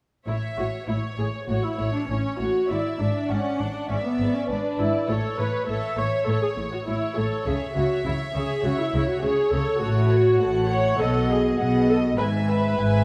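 In a flexible, rubato 4/4, this quick classical-period movement for symphony orchestra feels lively and cheerful, though it is cut from a longer piece. A dark, woody violin section carries the melody with vibrato, sounding distant and lush, while a second violin section adds a rich, pure line with a soft attack that seems to float. The viola section fills in the accompaniment with a mellow tone and sits up front, the loudest of the strings. Underneath, a cello section with a gentle, floating quality and a close, dark double bass section with vibrato share the bass line. Every section is bowed sul tasto and plays together from 0.3 s to 13.0 s, moving through a progression that lands on E/G# at 12.2 s. A recital hall reverb with a 1.4-second decay wraps the strings in a wet, resonant space.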